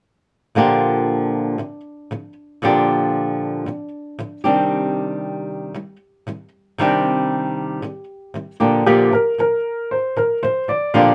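A straight 4/4 pulse at 116 BPM carries this easy-going, heartfelt acoustic pop excerpt in Bb major, where a fingerpicked flamenco guitar sits up front from 0.6 seconds, moving from Bb6 to Cmadd9 and back. At 8.9 seconds an upright piano with a woody, warm tone takes the melody up front beside the guitar through to 11.1 seconds, all in a light reverb.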